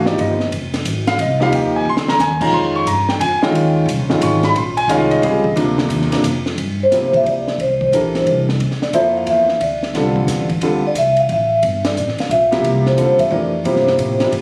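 A brisk 3/4 swing at 178 BPM drives this cool, searching modal jazz excerpt, cut from a longer piece and set in Bb dorian before moving to G dorian. A compact cocktail drum kit sits low in the mix with a dark, rolled-off top, a high-tuned snare, a punchy kick, and crash, hi-hat and ride cymbals, adding a drum fill at 1.9 seconds. Beneath it, a woody, thumpy pizzicato upright bass holds the low end. Up front, a grand piano with long sustain comps through suspended and extended chords. At 6.8 seconds, just after the key shifts, a vibraphone played with soft mallets enters with the melody, its mellow, ringing tone shaded by a slow motor vibrato. The band hits an accent at 11.8 seconds, and the whole take has a casual room feel, captured on a phone with light studio reverb.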